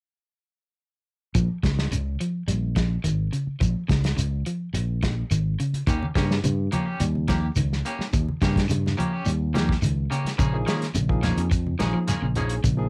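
A round, punchy fingered electric bass holds down the bass line in this defiant, driving afrobeat excerpt from 1.3 seconds. It sits up front beside a soul drum kit with a tight kick, medium-tuned snare, hi-hat and a rolled-off top, while a slightly broken-up electric guitar picks arpeggios in the background and a grainy shekere plays close and dry. Around 5.9 seconds the harmony moves from Bbm to Eb7 as a second, bright and twangy guitar adds scooped stabs with tremolo and low-tuned, thick-skinned congas join in the background. At 10.5 seconds a barky tine electric piano enters cleanly over Bbm7, all within a home cassette recording with light reverb.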